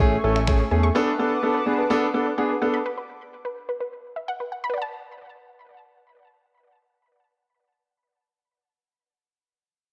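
Dance-pop with a confident, energetic lift, this short excerpt cut from a longer piece opens with everything stacked at once. A clear, polished baby grand piano plays accompaniment chords alongside a shimmering, slow-attack pulse-width pad with a dark sub-octave body, both pumping against a sidechain and carrying a cassette-tape tint, while a glossy, retro chorused synth bass and a smooth R&B kit of finger snaps and a knocking kick sit up front. A barely audible downlifter slips underneath in the opening moments. The drums drop away by 0.6 seconds and the bass by 0.9 seconds, and the piano and pad fall silent at 2.8 seconds. That leaves the round, detuned analog pluck, its bright, decaying arpeggios treated with chorus and tape echo, carrying on alone until 9.3 seconds over a light digital ambience. The harmony moves from Amaj7 to Bm7, passes through a rootless Esus2 and returns to Bm7, all with the home-cassette character of the recording.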